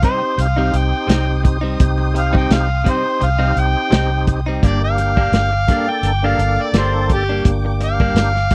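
A gritty, overdriven harmonica carries a mournful, smoky soul blues solo up front, its scooped notes and tongue slaps riding over a muffled, lo-fi soul drum kit, a full tonewheel organ turning on a slow rotary speaker with chorus vibrato, and twangy, clean guitar stabs recorded direct. A round, foam-muted fingered bass joins at 0.4 s, punchy and close. Dark chamber strings hold bowed chords far in the background of this dry, close, 1970s-style recording, which moves from Cm to Gm at 4.6 s.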